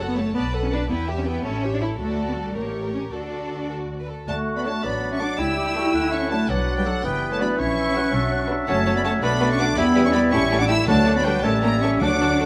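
Moving in a straight 6/8 at 109 dotted-quarter beats per minute, this quick, cheerful classical-period orchestral passage in D major opens with strings alone: a clear, distant violin melody rides over a rich second violin line, expressive violas and cellos sliding with portamento, and a smooth, even double bass line. At 4.3 seconds the winds join with airy flute, a roomy solo oboe, a bright, vintage-toned clarinet and a mellow bassoon, while a horn section holds soft-edged sustained chords in the background. Very quiet, articulate timpani struck with hard mallets enter at 10.9 seconds, and the whole passage sits in a moderate scoring-stage reverb.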